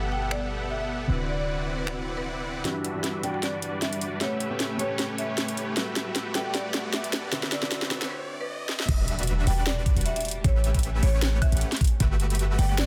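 A dense, heavily limited modern master with light reverb frames this lush, bittersweet future bass excerpt in E minor at 154 BPM, felt in half-time with a slight sixteenth-note swing and tuned to A4 = 437 Hz, its chords cycling through Gmaj13, D13, Em9 and A9. A soft felt-muted upright piano, a huge detuned supersaw riff, a deep, boomy 808-style bass up front and a woody marimba melody all pump with sidechain and, apart from the bass, trail tape echo, while a very quiet sul tasto string section holds smooth, sustained chords beneath. A trap kit with a sharp snare, metallic hats, finger snaps, woodblock and crash pushes a build-up from 2.7 s, with a drum fill, a filter sweep on the supersaw and a faint electronic riser; the piano drops out as the drop lands at 8.9 s with an impact and a knocking electronic kick.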